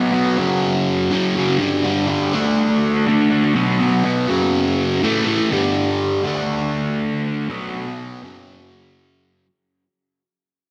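A straight 4/4 rock pulse at 122 BPM drives this dark, trippy fragment cut from a longer piece, carried entirely by a lone fuzz guitar that plays from 0.0 to 9.5 s, spanning F#2 to D4. The bright, picked guitar is distorted, double-tracked and compressed, sitting up front in an echo-heavy mix with light reverb, while phaser and analog delay add a swirling, psychedelic haze as it moves through F#5, G5, D5, B5 and A5 power chords. A second section begins at 5.5 s, where the recording starts fading out through to its close at 9.5 s.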